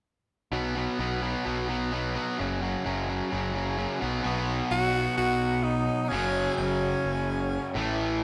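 A straight 4/4 rock groove with a sunny, swaggering strut opens this cut from a longer piece, as a crunchy, up-front overdriven guitar riff and a direct, amped picked electric bass move between B5 and F#5 chords. At 4.2 s a second, brighter guitar joins the riff in the background, and from 4.7 s a raspy, edgy tenor saxophone solo takes the melody close-miked and up front, with vibrato, scooped notes, slapback echo and analog delay. A lush hall reverb gives the whole mix a big arena sound.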